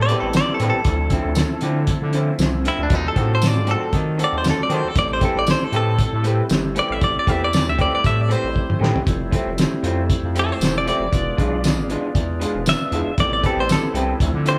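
A twangy, up-front clean electric guitar solos mournfully across this 14.6-second soul blues fragment at 117 BPM in A minor, carried by a muffled, cloth-damped drum kit with a fat snare and a drum fill at 8.6 seconds, a growling FM bass, slightly broken-up guitar stabs, and a reedy, lightly overdriven tonewheel organ turning slowly through its rotary speaker in the background, all in a large studio room with moderate reverb.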